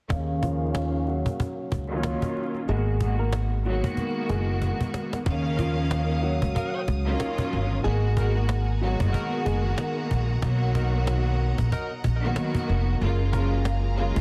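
Nostalgic and confident, this boom-bap hip-hop cut from a longer piece rolls along with a swung sixteenth-note feel over a dense, heavily limited master dusted with vinyl crackle and light studio reverb. A woody cajon with hard hands and faint snares sits close and dry, while a pizzicato upright bass with steel strings stays up front, plucking a warm, woody low line beneath a lush, bowed string section that carries the accompaniment throughout. A dark, thumb-plucked flamenco guitar carries the melody from 0.4 s to 9.6 s, filtered and trailed by delay. After a filter sweep and a drum fill, the second section at 5.3 s brings in a higher layer of sustained string chords in the background, and punchy pop-style horn stabs with vibrato join soon after, also set back and echoed by delay. The harmony moves through lush minor-ninth, major-seventh and major-ninth chords, giving the groove a smoky, reflective glow.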